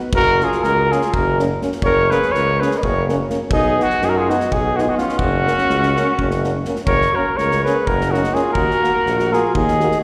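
Festive and wild, this Balkan brass band cut from a longer piece races along at 250 BPM in 7/8 in F# major, with a mellow, vintage trumpet carrying the melody up front with light vibrato and slapback echo, a smooth-topped alto saxophone with vibrato shaping the second line, a clear, soft-attacked tuba holding down the bass up front, a loose acoustic kit with tight kick and medium-tuned snare, and a distant French horn and warm euphonium filling in roomy accompaniment in the background, all heard as a live gig through the venue's PA inside a lush hall reverb.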